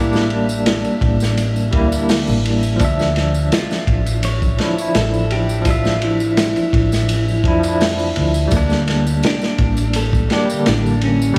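This smoky, melancholic trip hop excerpt opens on a bell-like tine electric piano carrying tremolo, tape echo and a filter sweep, alongside a twangy, picked clean electric guitar melody with its own tape echo, a woody pizzicato upright bass and a very quiet, detuned string-like drone. A crunchy, saturated breakbeat kit with dark cymbals and a tight kick sits up front from 0.2 seconds, while a tambourine lingers in the background. The harmony moves from Em7b5 to Dmadd9 and back within a small studio room.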